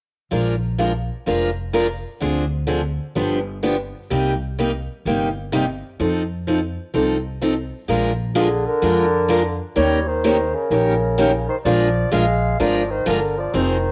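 This charming, swinging stretch of acoustic string swing in the gypsy-jazz manner opens with a picked steel-string parlour guitar and a pizzicato upright bass entering together at 0.3 seconds. The guitar sits up front with a bright, boxy tone from fresh strings, while the gut-strung bass gives a woody, thumpy bottom that is also placed close and present. They carry the harmony through a turn of dominant and minor seventh chords before the music moves into a new section at 7.9 seconds. At 8.4 seconds a dark clarinet takes the melody in a jazz style, its subtone and vibrato giving it a smooth top and a slightly worn, tape-coloured character. Alongside it a mellow bassoon plays a second line in a more classical style, with light vibrato and a vintage quality. The whole has the feel of a home cassette recording in a studio space, with moderate spring reverb, and it breaks off as part of a longer piece.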